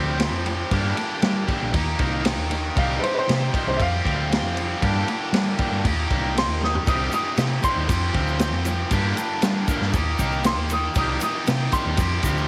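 A clear, woody upright piano carries the melody from the first moment of this bittersweet, restless indie rock passage in C minor at 117 BPM, set over a biting overdriven guitar riff with subtle chorus and analog delay, a compressed fuzz guitar tucked in the background, and a round, hollow-body bass, all circling through Fsus2, Gm, Eb and Cm. A vintage kit enters at 0.2 seconds with a punchy kick, dark cymbals and a tape-softened, rolled-off top, plays a fill at 6.6 seconds, and a grainy tube shaker joins at 6.9 seconds. The piano's solo line with analog delay stays the focus, with studio reverb over a homespun cassette sound.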